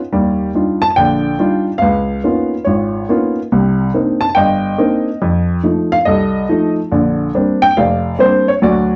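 Moody and swinging, this short solo jazz fragment, cut from a longer piece, moves at 141 BPM in 4/4 with a 65% swing on the eighth notes. A baby grand piano carries it alone from 0.1 to 9.0 seconds, ranging from F1 up to A5 with an intimate, up-front presence, short sustain and audible action noise that makes the instrument feel close at hand. A slapback echo on the piano adds a quick doubling to its natural tone. The harmony travels through Ebmaj9, C#13, Cm9 and F7 before settling on Bb69. The recording has a dry, close 1970s studio character with a light touch of reverb.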